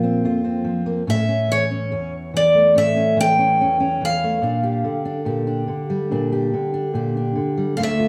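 Folk piece at 71 BPM in a straight 4/4, melancholic and heartbroken, cut from a longer recording. A dark, full-bodied fingerpicked steel-string acoustic guitar with fresh strings plays the accompaniment from the start, moving from Bbsus2 to A and then Gm/Bb. An old ladder-braced acoustic guitar, woody and boxy with old strings, enters at 1.1 seconds to carry a picked melody high above, both guitars up front in a small room with moderate large studio reverb.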